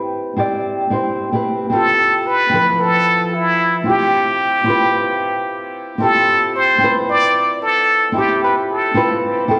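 Chillout at 112 BPM with a light 16th-note swing and a wistful mood, this short excerpt opens on a dark, thumb-plucked nylon-string guitar, filtered and touched with digital delay, playing a Cmaj9 chord before a brilliant, punchy plunger-muted trumpet with a jazzy wah-wah voice enters up front at 1.7 s over a rootless Dm11, its solo line carrying delay, all set in a lush scoring-stage reverb.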